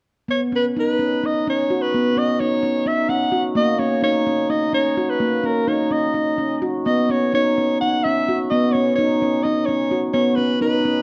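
Pulsing in an uneven 7/8 at 255 BPM in eighths, this restless, playful contemporary chamber excerpt in B major pairs a breathy, vibrato-laden soprano saxophone melody with scooped, jazz-style notes and ringing, meditative handpan arpeggios struck with soft fingertips, both up front from 0.3 to 11.0 seconds over a dark, warm production with a moderate scoring-stage reverb.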